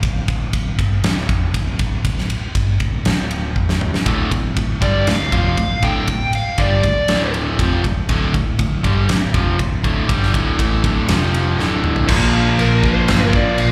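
This cut from a longer hard rock piece sounds like a live gig heard through the venue's PA, with a small club reverb around the band. An aggressive, menacing mood is set from the start by a growly, punchy overdriven electric bass and a huge, up-front arena drum kit with a fat snare, punchy kick and bright cymbals, including crash, ride and toms, with a drum fill leading into the guitars. At 4.1 seconds, two picked overdriven rhythm guitars enter on the riff: one biting, the other a hollow-bodied semi-hollow sitting in the background, both carrying slapback echo. A smooth overdriven lead guitar adds melody at 4.8 seconds and returns briefly near the close, also with slapback echo. At 12.1 seconds, after another fill, the chords move to Bb5, and a bright, double-tracked overdriven electric guitar joins the riff, while a very quiet, gritty tonewheel organ holds thick sustained chords with key click and fast rotary speaker.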